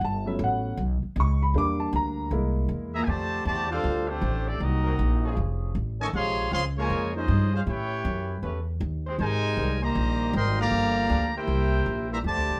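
Recorded live in one room with moderate studio reverb, this energetic, swinging big band jazz excerpt at 157 BPM opens on an intimate concert grand piano, its action noise audible, over a woody pizzicato upright bass. At 2.9 seconds the piano gives way to a tight, up-front trumpet section carrying a clear melody, a dark, distant trombone section playing a second line, and, from 3.7 seconds, a smooth-topped trombone section holding sustained chords through rich harmony such as Gmaj9#11, F7alt and Abmaj9.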